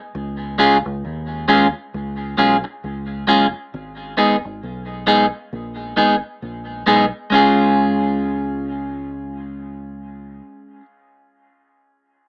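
A slow, relaxed 4/4 pulse at 67 BPM carries this roots reggae excerpt, its sixteenth notes swung by 58% for a loose, easy sway. The mood is laid-back yet uplifting, set in Db mixolydian and moving from Db to Abm before returning to Db when the second section arrives at 7.3 seconds. A deep dub fingered electric bass enters at 0.1 seconds, its dark, round tone sitting low between Gb1 and Eb2, direct and amped but set well back in the balance. A clean, picked electric guitar joins at 0.6 seconds as accompaniment, up front and shadowy in colour between Ab3 and Ab4. Moderate studio reverb gives the pair a modest sense of room, while the overall sound has the boxy character of a small speaker.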